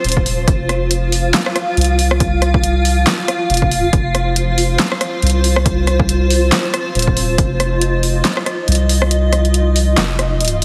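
This dark, meditative deep dubstep excerpt opens on a blurred granular cloud pad holding an F5 chord, its detuned unison voices evolving through a slow attack and a moving notch inside their own built-in reverb. Underneath, a soft dub sub bass sustains round, deep tones with a fast attack, sitting up front in the low register. A deep house drum kit plays alongside from the start, with handclaps, hi-hat, rim click and a fat, overdriven snare placed forward in the mix. An electronic kick drum, layered and punchy with its own overdrive, enters at 0.2 s and drops out at 7.5 s. The groove moves at 139 BPM in a half-time 4/4 feel with a light 16th-note swing. The whole track carries light reverb and a heavily compressed, radio-like sound.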